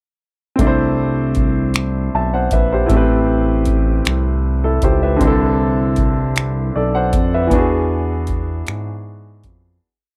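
Yearning and late-night, this short, slow six-eight R&B piece at 52 BPM sets a clear concert grand piano's spread, held chords and short fills over a smooth, gliding synth bass line with slides and chromatic approach notes and a booming analog drum machine of deep kick, metallic hi-hat and finger snaps, moving through C69, Am9 and E7 in a dry, close 1970s-style studio sound before fading out from 7.5 seconds.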